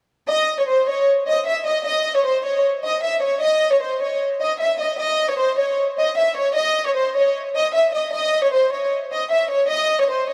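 Menacing and eerie, this half-time hip hop excerpt at 153 BPM in 4/4 features a warm studio violin section carrying the melody from 0.3 to 10.3 seconds, its soft-attack, pure, floating bowed ensemble tone sitting up front with digital delay inside a huge ambient reverb of 3.8 seconds that gives the dark production its haunting depth.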